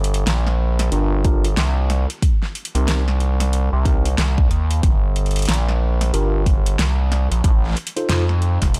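A gritty, wave-folded synth bass sits up front with a pop drum kit of fat snare and metallic hats in small room ambience from the opening of this playful, funky glitch hop cut at 92 BPM in G minor, swung on the 16ths, before a mellow tine electric piano adds stabs through phaser, sidechain pumping and digital delay at 0.9 seconds and a punchy, tape-toned electronic kick joins at 1.2 seconds, moving over Gm7, Cm7, Gm and F7 in a dark, warm production.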